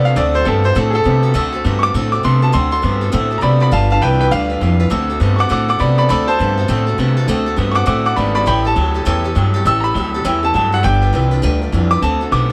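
Swung eighths drive this rollicking, upbeat rock shuffle, a 12.5-second slice of a longer piece that moves from D7 through G7 and A7 and back home. A bright, intimate upright piano solos across the whole stretch, its action noise audible and its notes ringing long, while a twangy, slightly broken-up electric guitar plays a riff through a small old amp with spring reverb. Underneath, a boxy archtop acoustic with old strings picks the accompaniment and a thumpy, dark pizzicato upright bass with gut strings sits up front, set in a small room with light reverb.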